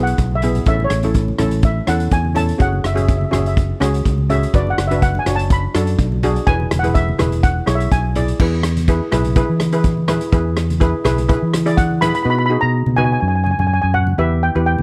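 A mellow lead steel pan, played with soft rubber sticks and sitting up front, carries a solo melody through the first 8.4 seconds of this bouncy, sunny calypso excerpt, returning at 11.8 seconds over a bright double-seconds pan accompaniment struck with hard rubber sticks. A growly, amped fingered electric bass and a saturated, gritty garage drum kit with a punchy kick, crash cymbal, hi-hat and rim click drive the straight 4/4 groove, with the drums dropping out at 12.2 seconds while very quiet, low-tuned congas keep playing beneath. The sound is dry and close in a 1970s studio style, and the harmony moves from E through A, F#sus2 and Bm/F# and back to E before closing on B and Em.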